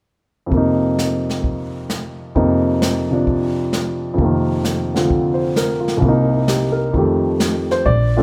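Polished, up-front grand piano sits in light reverb at the heart of this relaxed, swinging jazz piano trio excerpt, carrying the melody from 0.5 seconds over F7sus4 before moving through Cm7 to F9. Beneath it, a brushed drum kit from a small room keeps time with brushed snare, hi-hat and a boomy kick. A woody, pizzicato upright bass with steel strings arrives only at 7.9 seconds, sounding a single low Bb just as the fragment ends.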